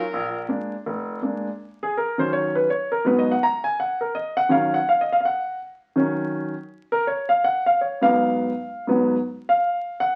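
Swinging and brassy, this brief jazz fragment opens with a clear saxophone section playing a light-vibrato melody up front for just the first 0.5 seconds, while a warm, short-sustained baby grand piano enters at 0.1 seconds and goes on to take a solo from 1.6 seconds over minor-seventh harmony, all heard through a wet studio reverb and the crackle of a very old 78 rpm record.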